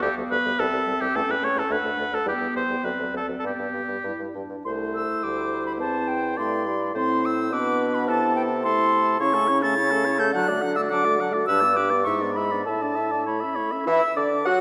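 A pure, straight-toned concert flute carries the tongued melody of this spirited, cheerful classical-period wind quintet movement in 2/4, shaped with rubato and cut from a longer piece. An up-front oboe sings a second line, while a dark, distant clarinet and a roomy French horn fill out the accompaniment above a warm bassoon bass; the oboe, horn and bassoon all shade their tone with vibrato. The quintet sits in a wet scoring-stage reverb, and the harmony moves into a new section at 4.7 seconds before settling on an open suspended chord at 13.9 seconds.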